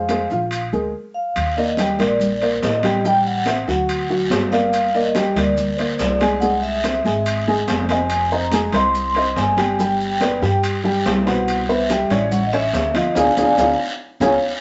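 Afro-Cuban jazz at a driving, fiery 142 BPM in C minor, this excerpt from a longer piece sets an airy, ringing soft-mallet vibraphone melody with medium motor vibrato over a dark, worn, slightly detuned upright piano placed up front, with a woody pizzicato upright bass, distant metal-shell timbales, high-tuned congas, grainy maracas kept in the background and a raspy guiro that enters at 1.4 s, just after a brief band stop from 0.9 s, before a band accent from 13.2 s closes the passage in a moderate studio reverb.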